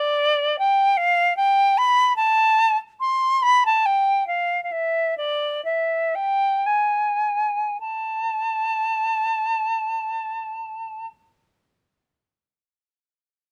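Closely miked and detailed with little reverb, this short cut from a longer baroque-style classical fantasia in A minor features a solo silver concert flute, up front, pure and metallic with vibrato and tongued notes, moving between D5 and C6 in a grave, solemn 3/4 at a rubato 52-76 BPM, slowing from 1.0 to 7.8 seconds before a new section begins and runs to the end at 11.1 seconds, tuned to A4 = 442 Hz.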